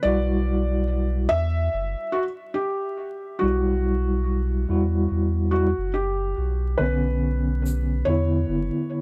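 Trip hop at 71 BPM in 4/4, this hypnotic, cinematic fragment from a longer piece rides a swung sixteenth-note feel, moving from Emadd9 to Bmadd9 at 6.8 seconds. A felt-muted upright piano carries the melody, its soft, intimate tone bringing audible action noise and a tape echo trail. Beneath it, a mellow tine electric piano supplies the accompaniment through built-in speakers, shaded by tremolo, a low-pass filter and vintage 12-bit sampler grit. A round, sine-like sub bass with tube saturation sits deep and up front until 8.7 seconds. A bright egg shaker, close and dry, appears only briefly at 7.7 seconds. The sound is dry and gritty, with hardware character and vinyl crackle throughout.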